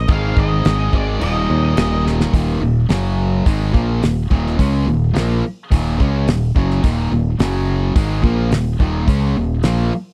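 A dry, close 1970s-style studio sound frames this swaggering, driving classic rock excerpt, where a dark octave-fuzz lead guitar with slapback echo plays a brief melody until 2.0 seconds over a growly, punchy fingered electric bass, a bright, tight distorted guitar riff, a crunchy overdriven guitar sitting in the background, and an up-front damped drum kit with a fat snare and tight kick that plays a fill at 2.1 seconds.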